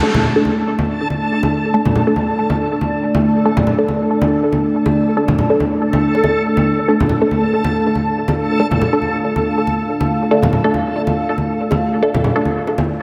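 Deep dubstep with a heavy, meditative mood and a half-time, swung feel, this excerpt is built on a dark, moody ambient pad of detuned sawtooth and sub-octave tones with chorus, over which muted, resonant chord stabs carry phaser, 12-bit sampler grit and dub echo. A reversed, granular texture swells dreamily, while ringing, hard-hand congas and bongos sit up front in a small room with their own dub echo. The whole mix is soaked in a lush hall reverb, giving it a dreamy space.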